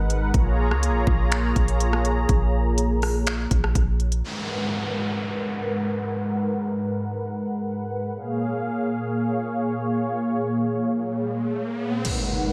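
Atmospheric cloud-rap hip hop at 123 BPM in a hazy, ethereal half-time feel, built on a smooth, detuned sawtooth analog pad that holds sustained A#m7 and G#m7 chords with chorus and sidechain pumping. For the first 4.2 seconds a round, sine-toned 808 bass and a produced trap kit sit up front; the kit has a hard-clipped kick, crisp hats, finger snaps, rim clicks and gated reverb. Then both drop away as an electronic downlifter and riser take over, leading to an impact at 12.0 seconds where the drums briefly return in this lush hall space with its bright 1980s-style digital sheen.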